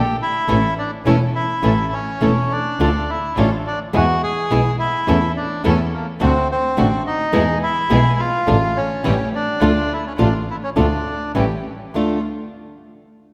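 Tense and passionate, this tango in D harmonic minor moves at 105 BPM in 4/4 with a rubato feel, and it is cut from a longer piece. Up front, a reedy, vintage-toned bandoneon carries the melody with a band-limited character, while a single bowed double bass plays sul tasto with a soft attack, giving a pure, floating low line. A fingerpicked acoustic flamenco guitar joins the accompaniment at 0.5 seconds, its finger squeak adding a warm touch. In the background, a muted chamber string section plays con sordino stabs, dark and veiled with vibrato. The harmony circles through A, Dm, E, D7 and A7 before settling on Dm at 11.9 seconds, all set in a moderate concert hall reverb.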